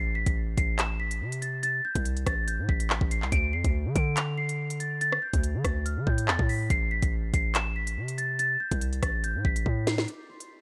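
Cold and menacing, this half-time drill hip hop excerpt at 142 BPM in A minor sets a delicate, bell-like large celesta melody, softened by a low-pass filter and ringing high over Am and D5 chords, against a punchy, heavy sine 808-style bass with a fast attack and noise layer, while an up-front electronic drill kit of knocking kick, sharp snare, crisp hats, handclaps and rim clicks carries vintage 12-bit sampler grit in a dry mix, with a drum fill arriving at 9.7 seconds.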